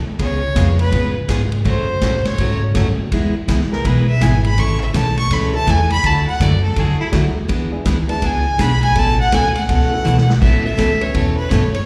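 Playful and down-home, this western swing country tune moves at a brisk 164 BPM in A major, with a 63 percent swing on the eighth notes. A biting, clear fiddle with light vibrato sits up front and carries a bowed solo through the first 10.4 seconds. Beneath it, a woody, thumpy upright bass plays pizzicato on gut strings, while a bright, full-bodied jumbo steel-string acoustic guitar is picked in accompaniment. A big-band drum kit swings with a punchy kick, a medium-tuned snare, hi-hat, ride and crash, and it plays a fill at 10.0 seconds. A dark, mellow upright piano with audible action noise stays in the background, and the fiddle, guitar and piano each carry a slapback echo. The changes move from C#7 through F#m, E and A to Dadd9, E7 and Aadd9, heard live through a venue's PA with the reverb of a recital hall.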